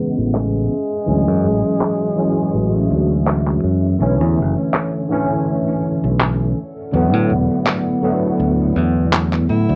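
Vaporwave with a woozy, melancholic mood, this short fragment drifts through lush chords from Amaj7 to Dmaj9#11, Bm11 and E9sus4 with a gentle sixteenth-note swing. A worn, slightly out-of-tune tine electric piano carries the accompaniment up front, its clean tone coloured by ensemble chorus, cassette tape and tape echo. Behind it, a dark, warbling tape-like pad holds sustained chords with slow attacks and long releases, its detuned, wave-folded tone softened by chorus and built-in reverb. A bright, growly fingered electric bass sits close and direct with tube saturation, while sampler-style electronic handclaps keep time from 0.3 s with studio reverb and cassette colour. A clear, close-miked tenor saxophone plays a jazz-style solo with vibrato and scooped notes until 3.6 s, returning briefly at 9.5 s, its tone roughened by vintage 12-bit sampler grit and tape echo. The whole piece has the hazy feel of a home cassette recording in a small room, with a low-pass filter and a filter sweep running throughout.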